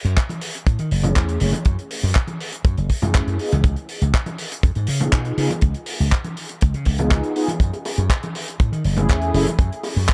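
Light reverb and small-room ambience frame an echo-heavy mix in this short cut from a longer nu-disco track, moving at 121 BPM in a straight 4/4 feel in F# dorian with a cosmic, groovy mood. A bright, punchy slap bass sits up front from the very start. It is joined almost at once by a damped 70s drum kit adding handclaps and hi-hat with a dry, warm acoustic character, and then by a dry, tight kick drum with a rolled-off top, also placed up front. Band-limited congas and bongos carry a dub echo. At 1.0 seconds a mellow synth brass part arrives, round and dark, built from detuned sawtooth and triangle tones with a fast attack, sustained notes, a filter sweep, chorus, 12-bit sampler grit, sidechain pumping and dub echo. The harmony moves from F#m7 to C#7 at 3.4 seconds and returns to F#m7 at 7.6 seconds.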